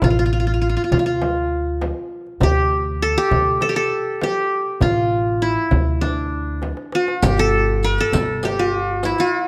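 A bright-edged qanun, plucked with fingerpicks on triple strings, sits up front in this short, hypnotic and melancholic cut from a longer Arabic maqam ensemble piece in D minor, moving at 100 BPM in a straight 4/4 and reaching a quarter-tone-inflected Bb. Underneath, a woody, thumpy pizzicato upright bass on gut strings holds the low end, while a clay-shelled darbuka played with soft hands stays in the background beside a deep, large frame drum. After a drum fill at 6.6 seconds, the music shifts into a new section at 7.2 seconds, where a riq with bright jingles and hard hands joins in the background, all heard through close, detailed microphones with light reverb.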